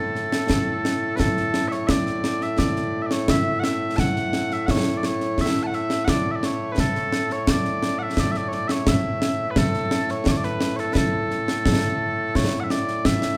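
Mellow, sweet small bagpipes open with a continuous, vibrato-touched solo melody in A major, joined up front at 0.2 seconds by a close, dry concert snare and bass drum with dark cymbals, giving this ceremonial, proud Scottish traditional pipe excerpt a straight 2/4 pulse at 86 BPM in a moderate recital-hall reverb.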